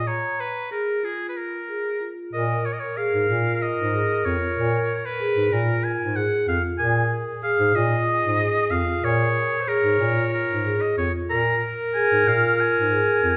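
Set in the wet bloom of a recital hall, this hypnotic, pensive contemporary chamber piece in 7/8 at 187 BPM (eighths) in Bb phrygian pairs a clear, vibrato-tinged oboe melody with a mellow, smooth-topped bass clarinet line and ringing soft-mallet vibraphone arpeggios, while a bright, vintage-toned clarinet enters at 2.3 seconds with a second line as the harmony shifts from Bb7(no3) to Bbm7.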